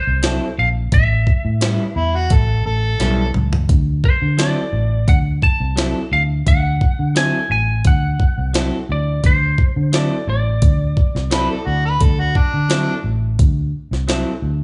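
Soulful and rollicking, this straight-eighth soul blues rides on a gritty, pitched-up sampler-style drum kit with a thumpy kick, a high-tuned snare and a fill at 3.0 s, joined by a round, punchy foam-muted electric bass, bright, twangy stabs from a guitar through a small old amp, a dark, slightly broken-up lead guitar melody, and an amplified, overdriven harmonica with tongue slaps and scooped notes that cuts in at 2.0 s and again at 11.3 s, the band sounding live together in one large room with moderate reverb.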